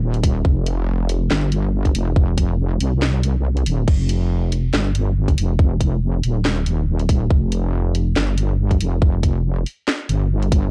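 A heavy, detuned wobble bass with tube-saturated grit and chorus opens this cavernous, meditative deep dubstep excerpt, joined at once by a garage kit of cracking snare, handclaps, hi-hat and crash, plus a tight, up-front electronic kick that drops out briefly from 3.4 to 3.9 seconds, all in a half-time swing under dark digital ambience.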